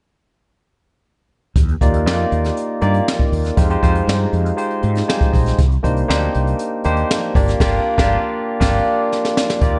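Slick and urban, this polished 1980s jazz-funk pop cut at 119 BPM sets a round, dark fretless electric bass with ensemble chorus under a jazz brush drum kit with a boomy kick, high-tuned snare and dark cymbals, while an up-front, barky tine electric piano through a combo amp, lush with chorus, moves through Ebmaj9, Fm9, Cm9 and Gm7 and adds a fill at 4.6 seconds before the band hits an accent from 7.6 seconds and the drums fill at 9.1 seconds, all in a light small-room reverb.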